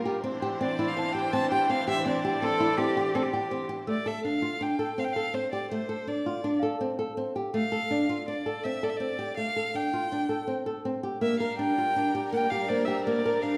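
Fingerpicked flamenco guitar sits up front with audible finger squeaks, spinning arpeggios through this hypnotic, restless excerpt of contemporary chamber music in 5/4 at 164 BPM in D minor. A warm, smoothly bowed solo violin carries the melody with vibrato from 0.6 seconds, while a clear cello adds a second line and a rich studio string section holds sustained chords in the opening moments, the strings returning at 11.2 seconds as the harmony moves to Bb6. A bell-like, delicate celesta glints in the background, all set in a moderate scoring-stage reverb.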